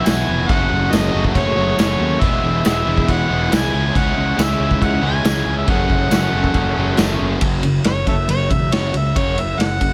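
Driving and brooding, this classic rock excerpt in F# minor moves at 138 BPM in a straight 4/4, with a gritty, amplified harmonica carrying the melody with punchy tongue slaps over bright, double-tracked riffs from an overdriven semi-hollow guitar and a very quiet cranked stack guitar. Underneath, a fuzz-drenched picked bass and an up-front vintage kit with dark cymbals and a punchy kick drive the F#madd9, E, C#m and F#m changes, while a silky, phased string machine and a distant, jingly tambourine sit far in the background. At 7.4 seconds the string machine and stack guitar drop out on an F#5 chord, leaving the harmonica to solo over the semi-hollow guitar, bass and drums in light reverb.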